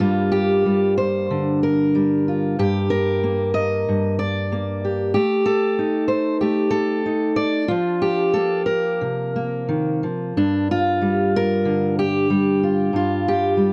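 Rubato in 4/4, this melancholic, intimate folk excerpt features a lone fingerpicked steel-string acoustic guitar with a dark, auditorium-bodied tone, placed up front in a dry, close 1970s-style studio sound as it moves from Gm7 through Am7b5 and Fsus4 before returning to Gm7 at 10.4 seconds.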